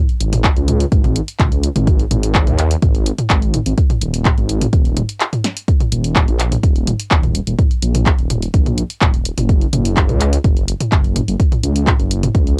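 A steady pulse in straight 4/4 drives this melodic techno piece, taken from a longer track, with a hypnotic, dramatic mood. A punchy analog drum machine opens, its handclaps, hi-hat, snare and toms carrying a tape-warm edge and a short room sound on the snare, clap and hats, and a deep, layered electronic kick soon joins up front. Underneath, a menacing detuned sawtooth bass in unison with a sine layer, spanning Eb1 to Eb2, evolves through a filter swell with a fast attack and sustained notes, pumping through sidechain compression. A brief break opens at 5.2 seconds, marked by a drum fill at 5.4 seconds, before the groove resumes. The sound is dry and close, with the character of a home cassette recording.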